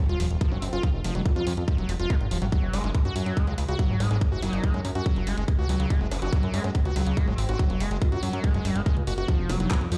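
A straight 4/4 pulse at 142 BPM drives this hypnotic, intense psychedelic trance excerpt, with a tight, overdriven electronic kick punching up front from 0.4 seconds and an overdriven garage kit of bongos, handclaps and hi-hat sitting further back. A fat, detuned analog bass, nasal and saturated with a plucky filter, holds the low end throughout. Over it a screaming acid riff squelches with aggressive resonance, filter sweeps, distortion, chorus, delay and sidechain pumping. A quieter vowel-sweep wobble bass stays in the background, its formant filter giving a sine-based, nasal wobble treated with chorus, digital delay and pumping. The harmony sits on F5, shifts to Gb5 at 2.5 seconds and returns, and a swarming, detuned drone barely surfaces at 9.9 seconds as the clip ends, all sounding as if pushed through a big sound system in a bare room.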